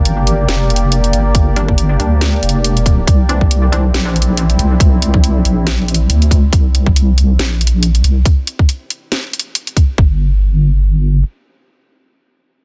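Dense and heavily limited, this cavernous slice of deep dubstep sits in a digital ambience and is cut from a longer piece. At 139 BPM in a half-time 4/4 with a light swing on the sixteenths, it moves from Gm to Cadd9 with a meditative calm. A soft, warm wobble bass, thickened with chorus and tube saturation, sits up front beside a tight, layered electronic kick that enters at 1.3 seconds, while a garage kit supplies a cracking snare and bright hi-hats. A moody ambient pad of detuned saws and a sub octave, washed in reverb, holds sustained chords with a slow attack until 6.5 seconds. Tucked in the background, a muted, mellow filtered chord stab plucks and decays through dub echo, and the bass carries on to 11.2 seconds after the drums stop.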